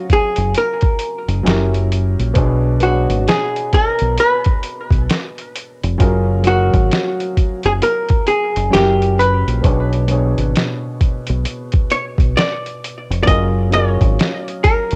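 A dark, hollow-body archtop guitar carries the melody from the first moment, picked and clean through a low-pass filter, cassette tape, analog delay and plate reverb, over a woody, vintage upright piano softened by tape and the same plate reverb. This cosy, nostalgic lo-fi hip hop piece, cut from a longer work, gains a compressed, pitched-down sampler drum kit with a thumpy kick, medium-tuned snare and hi-hat carrying 12-bit grit at 0.1 seconds, and a round, deep dub fingered bass up front from 0.4 seconds. The swung groove drifts through chords such as F#maj9, F#7b9 and Bm6 in a lightly reverberant home cassette sound.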